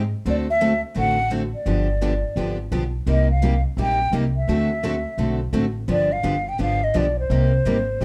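A breathy, hollow silver concert flute with vibrato and plate reverb carries the melody up front in this swinging, bittersweet excerpt of acoustic jazz manouche, over a woody, thumpy pizzicato upright bass that opens alone at 0.0 s and two picked steel-string acoustic guitars, one bright and full-bodied and the other boxy and quieter, that accompany a cycle of D7, G7 and Cm7 in a dark club ambience.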